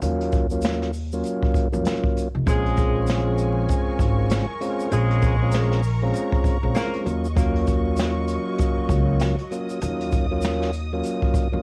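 A lo-fi, homespun sound opens this short cut from a longer boom-bap hip-hop track, carrying vinyl crackle, light reverb and the soft haze of cassette. The mood is moody and reflective, with a swung groove built on a jazz brush kit whose boomy kick and medium-tuned snare sit up front, touched with tape character, while a grainy tube shaker rustles in the background. A woody, pizzicato upright bass and a clear tonewheel organ, lightly overdriven with audible key click and a slow rotary speaker, carry the harmony from the start over Ebm7 and Bbm7 chords. At 2.5 seconds a bowed studio string section enters with soft-attack, sul tasto sustained chords and vibrato, close and intimate. Alongside it, a mellow, vintage saxophone section plays tight stabs through analog delay until 7.0 seconds.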